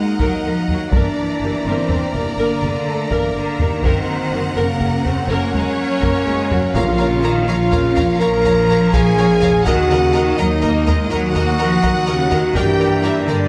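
A relentless, epic orchestral film cue in a straight 12/8 opens with two violin sections carrying the melody and a second line, one clear and distant, the other bright and close, over a dark French horn section, a very quiet punchy trombone section and a background chamber organ with chiff, all holding sustained chords, while rich cellos anchor the bass. From 0.2 seconds, a smooth viola section murmurs in the background, expressive double basses deepen the low end, and a taiko ensemble struck with heavy sticks drives the pulse through chords cycling from Ebm through Gm, Gb and Bbm. A very quiet, dry timpani hit with hard mallets sounds briefly at 6.7 seconds, all within a moderate scoring-stage reverb in this fragment cut from a longer piece.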